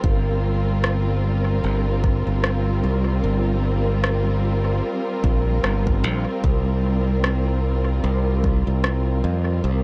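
Ambient dub with a deep, spacious mood, moving at an unhurried pace with a swung sixteenth-note feel. A dark string section holds lush, bowed chords up front, its woody tone and smooth top shaded by vibrato, while a bright fingered electric bass sits low and direct with a growly edge. An electronic kick gives a deep, layered, tape-touched pulse until 8.6 seconds, and an overdriven electronic rim click, entering at 0.8 seconds, is treated with dub echo. Both drum sounds carry the character of being re-recorded in a small room, and light digital reverb lends the whole mix an airy ambience. The harmony rests on a minor chord before shifting at 6.4 seconds, in this short cut from a longer piece.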